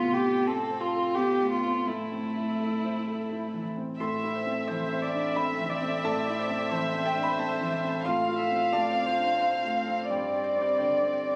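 Heard through a phone recording in the room with light studio reverb and vinyl crackle, this longing, reflective neoclassical piano-and-strings passage, cut from a longer piece, moves at a rubato 88 BPM in 3/4 in A minor over F/A, Am and Gsus4 chords, as a dark, intimate solo violin carries the melody up front with soft, sul tasto bowing and light vibrato above a pure, floating cello second line and a clear, boxy baby grand piano, joined at 4.0 s by a rich, airy-bowed viola and by a ringing, fingerpicked concert harp playing arpeggios through analog delay in the background.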